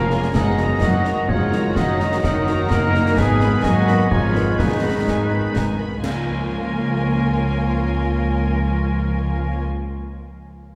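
A lush symphonic violin section soars on the melody from the start of this heroic adventure-film cue at 127 BPM in 3/4, joined by a clear solo oboe and an expressive, portamento-laden second violin line, with focused violas, dark distant French horns holding chords and mellow trumpet stabs. Beneath them, an up-front double bass section and smooth cellos anchor the harmony, while concert snare, bass drum and bright clash cymbals, close and dry, drive the music until 6.1 s. A long church reverb gives the whole orchestra a grand, roomy sweep through the move from Ebm/Gb and Abm to a closing Db6 at 6.0 s.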